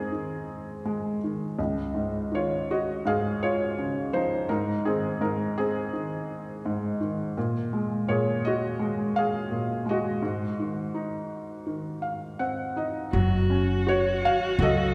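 This acoustic folk-pop ballad moves at a straight, unhurried 83 BPM in 4/4, tuned to A4 = 441 Hz, with a heartfelt, nostalgic mood. A felt-muted upright piano carries the melody from the start, its soft, mellow tone intimate and slightly vintage, with a short sustain and the thin felt sitting up front. The harmony moves from Ab through Dbadd9, back to Ab, then Ebsus4/Bb and Ab7, and the piano plays a fill between 11.7 and 13.1 seconds. At 13.1 seconds the music shifts to a new section on a Gb5 chord as two parts join. A single bowed viola holds a clear, intense second line with vibrato and a smooth top, while a pizzicato upright bass on steel strings adds a woody, dark low end close to the listener. A recital hall reverb with a 1.5-second decay gives the sound the spacious air of a church or concert hall, and the clip is cut from a longer piece.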